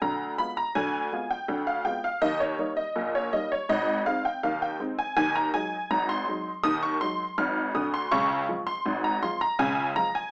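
A detuned, jangly honky-tonk upright piano plays solo throughout this cheerful, playful ragtime snippet in a straight 2/4, opening on a diminished chord and settling onto Db by 8.1 seconds, its bright, vintage tone spanning deep bass to high treble within a modest small-room reverb and a small-speaker sound that places it further back in the room.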